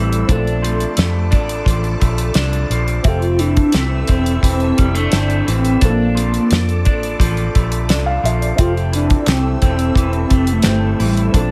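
Hazy and dreamy, this indie and bedroom pop excerpt drifts at 87 BPM in F major, a velvety synth lead with ensemble chorus and tape echo carrying the melody over a dark, slightly detuned upright piano with audible action noise, a lo-fi electric guitar through a small old amp with warbly pitch drift, and a silky string machine washed in phaser. Underneath, a round, foam-muted fingered electric bass and a dry, damped 70s drum kit with a fat snare and tight kick sit up front, while the chords sway between Bbmaj7 and Fmaj7. A crisp group handclap appears in the background from 9.3 to 10.8 seconds, and the whole recording stays close and nearly free of reverb.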